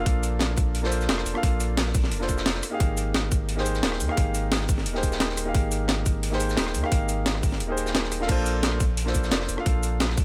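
Dreamy and warm, this excerpt of liquid drum and bass moves at 175 BPM in 4/4 with a straight feel, centred on B-flat major. A grand piano with long sustain sits up front, its chords passed through a digital delay as the harmony moves from Bbmaj9 to Abmaj9 at 2.6 seconds and returns to Bbmaj9 at 8.3 seconds. Beneath it, a deep, round sine sub bass holds the low end with a fast attack and sustained notes. Two breakbeat kits share the groove: a compressed, sampler-style kit with crash, hi-hat, rim click, shaker and a gritty snare, and a quieter, saturated acoustic kit, dark and rolled-off at the top, whose hats, snare and room are high-pass filtered. A tight, layered electronic kick drives the mix from the front, then drops out from 7.6 to 8.3 seconds before the section begins again.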